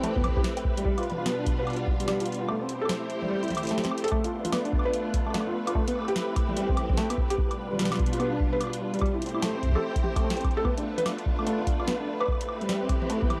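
Glitchy and melancholic, this swung IDM excerpt sets silky, dark string-machine chords with ensemble chorus and 12-bit grit up front, while a felt-muted upright piano plays mellow, intimate arpeggios through analog delay. A booming analog drum machine brings a tonal snare, metallic hats, toms and woodblock, and a deep electronic kick enters at 0.2 seconds, drops out from 2.5 to 4.1 seconds and returns after a drum fill at 3.9 seconds. Cassette tape colours every part, and the whole home recording sits in a light reverb over a minor-key progression that circles back to its opening chord.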